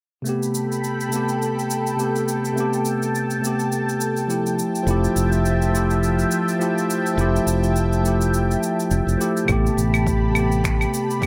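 A clean tine electric piano, low-pass filtered and touched with digital delay, stands out in this wistful, smooth sunset chillout excerpt in swung 4/4 over Am9 and Fmaj9 chords, backed by a lush, detuned unison pad with chorus and phaser and a natural layer of cabasa, claves and finger snaps, while a dark, round fingered electric bass enters at 4.9 seconds and a punchy electronic kick joins in the background at 9.5 seconds, set in small room ambience with light reverb.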